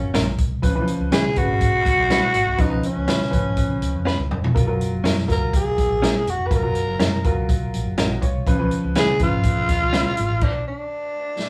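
A live small-room sound with light reverb frames this uplifting, warm stretch of uptempo 1960s-style soul, cut from a longer piece and moving between F#maj7 and C#7. Up front, a growling tenor saxophone carries the melody with breathy subtone, raspy grit and scooped notes, over a woody, slightly detuned upright piano, a dark, foam-muted fingered electric bass, clean compressed stabs from a direct-recorded electric guitar, and a swinging big-band drum kit with a boomy kick. A drum fill arrives at 4.1 seconds, and at 10.4 seconds the band stops, with only the saxophone and drums continuing to 11.5 seconds.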